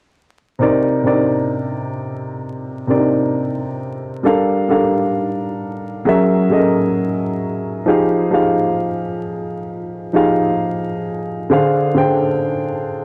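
Hazy and nostalgic, this short hip hop passage, cut from a longer piece, sits in a slow, swung groove in 4/4. A dark upright piano carries the accompaniment from 0.6 to 13.0 seconds, sitting up front with a mellow, woody character that a low-pass filter softens further. Its harmony drifts from Cm7 through Gm7, F#9 and Fm7 before settling on Dm7b5, giving the passage a wistful, unresolved colour. The recording has a gritty, vintage hardware feel, dressed in vinyl crackle and a short, wet studio ambience that lends the piano a smoky glow.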